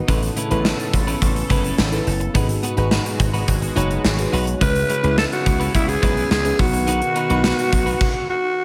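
This short cut from a longer 1980s-style pop piece has a lush, nostalgic sheen, set in light reverb with a studio ambience, and moves at 106 BPM in a straight 4/4 with a romantic mood. A gated 80s drum kit sits up front with a punchy kick, a medium-tuned snare in a bright stone room, and bright cymbals, while a dry thumbed slap bass, direct and foam-muted, holds the low end. A dreamy, warbling FM electric piano with a soft pad layer carries the accompaniment through chorus and shimmer reverb, backed in the distance by a sweeping resonant pad whose detuned sawtooth tone and ring modulation give it an evolving, full-bodied glow. A clean, picked electric guitar plays a compressed riff with a subtle chorus, over chords moving from Aadd9 to G#m7, C#m7 and B. At 4.6 seconds a raspy, gritty alto saxophone steps forward with a vibrato-laden solo melody wrapped in delay and shimmer reverb, and it carries on through a stop from 8.0 to 8.6 seconds.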